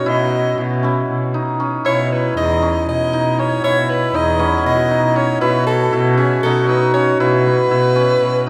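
Restless yet hopeful, this short excerpt from a longer piece of contemporary chamber music moves in an uneven 7/8 at 235 eighth-note beats per minute with a straight feel, tuned slightly high to A4 = 444 Hz. Up front, a close-miked soprano saxophone carries the melody in a jazz style, its tone full of vibrato, subtone and scooped notes, while a classical-style clarinet sings a second line beneath it. A mellow hammered dulcimer spins shimmering, ringing arpeggios, and a dark cello, bowed by one player with a gut-string, period-style tone that is reedy with a smooth top, holds the bass close to the listener. From 0.8 seconds a bright, crisp kora adds a very quiet fingerpicked texture. The harmony moves from Esus2 over B to C#m11 over E and back again, all set in the wet reverb of a scoring stage in a church or concert hall.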